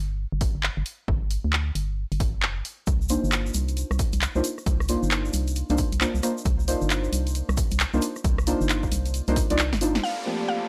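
Late-night and bouncy, this swung two-step UK garage excerpt opens on a hollow, organ-like FM bass with tube saturation, up front beside a punchy, tape-warm electronic kick and a house kit of handclaps, rim clicks, a filtered snare and warm, filtered hats. A grainy shaker slips into the background at 2.9 seconds, and deep, detuned chord stabs with chorus and tape echo arrive at 3.1 seconds. The kick drops out under a closing drum fill and band accent, then at 10.0 seconds a woody mallet-like synth pluck, a sul tasto violin section pumping to the sidechain, and an electronic downlifter appear in a dry, gritty mix.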